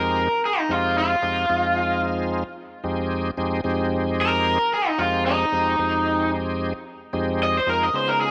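A light reverb and digital ambience frame this brooding, smoky blues fragment, cut from a longer piece, with a gentle swing and a single minor-seventh chord sustained throughout. Up front, a raw, picked electric guitar carries the melody with a bright, overdriven bite, while a full, shouting tonewheel organ fills in the accompaniment with audible key click, chorus vibrato, a slow rotary speaker and light overdrive adding a touch of grit. Both parts play together for the full 8.3 seconds.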